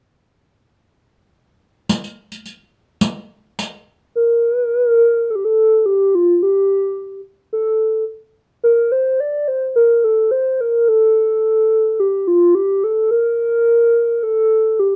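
Arabic maqam ensemble music in A maqam kurd at 107 BPM in a straight 4/4, carrying a longing, hypnotic mood in this fragment of a longer piece. A riq with dark jingles and soft hands plays up front from 1.9 to 3.7 seconds, and at 4.2 seconds a hollow, woody clarinet-like synth lead with a fast attack, sustained notes, vibrato and chorus takes the melody between F4 and D5 until the close at 15.0 seconds. The production is dark and warm, set in a moderate studio reverb.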